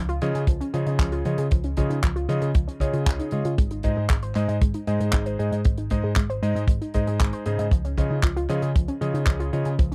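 A tight, up-front kick drum anchors this sunny, danceable italo disco excerpt alongside a polished funk kit of handclaps and hi-hat and a dark, round hollow-body electric bass with tube saturation. A warbling, lo-fi pluck spins arpeggios through chorus and tape echo, while a clear, vintage electric grand piano adds stabs with its own tape echo over a shift from Dbadd9 to Ab and back. The sound is dry and close, like a 1970s studio.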